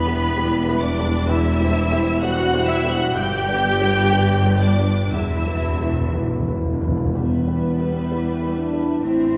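Cinematic, emotional film score in E minor at a rubato 59-66 BPM, sorrowful and longing, in which a lush, vibrato-laden violin section carries the high melody over a second violin line, with clear violas and a dark cello section set in the background, an intimate felt-muted upright piano and smooth, even double basses beneath, a round-toned timpani fill played with soft mallets from 5.1 s, and a mellow French horn section entering on sustained chords at 7.1 s, the ensemble heard from further back in a wet scoring-stage reverb in this brief excerpt from a longer piece.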